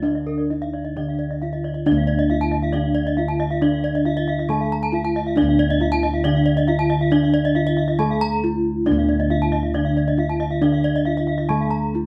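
Cut from a longer Balinese gamelan piece in a straight four, this shimmering, brilliant passage opens with the full ensemble playing live in one room: up-front, round bossed gongs carry the bass, a mellow metallophone struck with padded mallets sings the melody over a bright horn-mallet metallophone accompaniment, and two more bronze metallophones ring out arpeggios above, one airy and the other close-miked, dry and full, their paired tuning producing beating shimmer under a moderate reverb until the arpeggios drop out just before the gongs, melody and accompaniment ring to the cut at 12.1 seconds.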